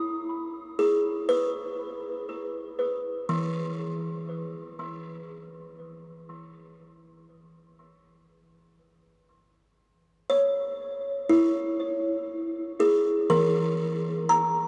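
Peaceful, serene ambient excerpt at 60 BPM in a straight 4/4, where a solo buzzing kalimba, played up front with a thumbnail pluck and a woody, hollow-box, vintage ring, spans E3 to D#6 through tape echo and a huge, dreamy reverb with an 8.7 s decay, drifting from a rootless C#m9 to C#m/E at 4.3 s and settling on E(#11) at 12.3 s.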